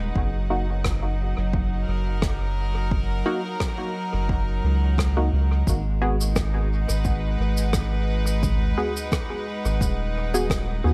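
A round, soft sub bass sits up front in this deep, meditative ambient dub excerpt at 87 BPM in G# minor, carried by a gently swung 16th-note feel. Bright, earthy chamber strings hold sustained bowed chords from the start, joined by a tape-warm electronic kick and a muted, detuned sawtooth chord stab with chorus and dub echo. A soft-mallet kit of cabasa, rim click and toms, heard in a big room and trailed by dub echo, enters at 0.8 seconds, and the mix rests in light reverb as the harmony moves from F#6 to G#m7 at 5.7 seconds.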